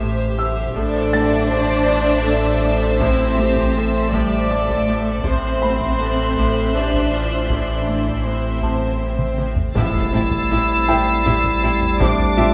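A stone-room reverb wraps this mysterious, tense suspense film-score excerpt in 3/4 at 80 BPM, where sul tasto strings, with a floating violin melody, dark cellos, a pure viola bed, a rich bowed double bass, a smooth high violin texture and a lush, woody second violin line, sit over a deep sine sub-bass drone, a bright ringing Celtic harp riff and a felt-muted upright piano, while hard-stick taiko enters at 0.7 seconds, an electronic swell and drum fill lead into a change at 9.8 seconds from C/A to Am7, a distant clarinet enters just before it, and mellow French horns and soft-mallet timpani join the impact there.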